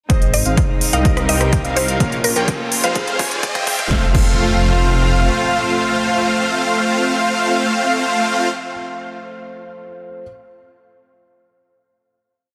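Bright, lush supersaw chords lead this short, euphoric festival progressive house piece at 126 BPM, their dotted-rhythm riff pumping under sidechain and opening through a filter sweep. A riser, a drum fill and a punchy, overdriven kick, snare and crisp hats drive the build to 3.9 seconds, where the music settles on a final F chord, with a thick detuned saw bass locked to the chord rhythm beneath. Around them sit a woody, percussive FM pluck with short answering phrases, a nasal, warbling unison lead doubling the chords, a floating bowed string pad, and a boxy grand piano with audible action noise holding chords until 10.2 seconds. Huge ambient reverb and echoes hang over a dense, heavily limited modern master.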